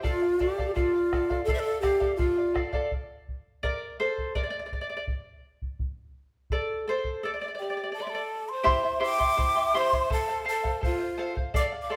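This short cut from a longer Andean folk piece moves at a straight 84 BPM in 2/4, and its mood is wistful and melancholic, opening on a D minor chord. A large wooden quena carries the melody, close-miked and up front, with a breathy, mellow tone, expressive vibrato and a crisp, chiffy attack. A bamboo pan flute plays a second line alongside it, reedy and soft-edged with its own vibrato, and both winds drop out early before returning at 7.6 seconds. The fingerpicked charango runs throughout, its doubled strings shimmering, some in octaves, and it takes a solo from 2.9 to 8.7 seconds. A round, close bombo sits up front underneath. The ensemble plays live together in a wet stone room whose reverb lingers around the sound.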